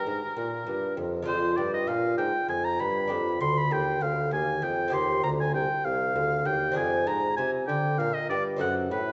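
Flowing and solemn, this short baroque-style sonata fragment in a straight 12/8 sets a mellow oboe melody with light vibrato and soft attack up front over a dark, smooth bassoon bass line and a delicate, fingerpicked gut-string lute accompaniment, moving from a rootless Ebmaj7 through Cm toward an F#dim7 at 8.6 seconds, all heard from further back in a reverberant recital hall with a dulled, distant top end.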